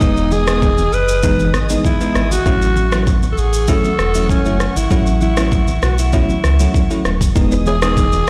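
A straight 4/4 afrobeats groove at 98 BPM in E major, built on a deep house drum kit with a deep kick, rim click and shaker over a full sine sub bass and very quiet, thin-skinned congas, carries a joyful, romantic feel as a breathy, raspy alto saxophone sings the melody up front with vibrato and digital delay. A sparkling, bell-like FM electric piano with chorus and tremolo accompanies through the Emaj7 and A6 chords while a dark, woody string section sustains them in the background, and a clean, direct-recorded electric guitar slips in a brief riff at 7.5 seconds, all heard through a big sound system in a bare stone room in this short cut from a longer piece.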